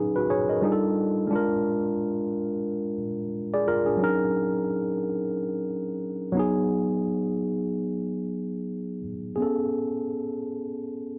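Silky and bittersweet, this short soul excerpt at 89 BPM in 4/4 with a gentle 16th-note swing sits in G# dorian, tuned to A4 = 439 Hz, and features a lone tine electric piano, worn, slightly out of tune and lightly overdriven through a combo amp, placed up front in a light digital ambience as it moves from C#9sus4 through D#m7 and G#m7 before shifting to a new section on Amaj9 at 9.4 seconds.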